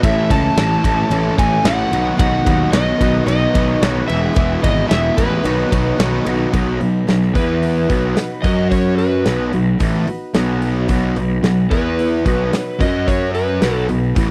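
A straight 4/4 groove at 110 BPM drives this confident, sunny classic rock excerpt in B mixolydian, where a punchy, up-front big rock drum kit and a growly fuzz picked electric bass anchor bright distorted and sludgy overdriven guitar riffs in the background, a very quiet, woody parlour-style picked steel-string acoustic guitar adds accompaniment, and a dark overdriven slide guitar carries the melody until 13.9 seconds, all captured in a dry, close 1970s-style studio sound.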